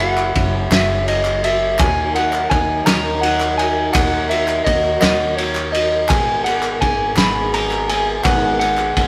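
Hopeful and warm, this brief excerpt of indie folk sways in a slow, straight 6/8 at 56 BPM, moving from F#sus2 through D#m to G#madd9 at 6.1 seconds. A slightly broken-up electric guitar carries the melody with harmonic tremolo, over a loose, saturated drum kit of punchy kick, medium-tuned snare and dark ride, a woody, growly pizzicato upright bass, and a boxy picked archtop guitar set back in the mix. Behind them sit a classical-style trombone second line, a reedy, breathing vintage harmonium holding quiet chords, and crisp group handclaps that stop at 8.9 seconds, all within a moderate stone-room reverb and a rough rehearsal-room sound.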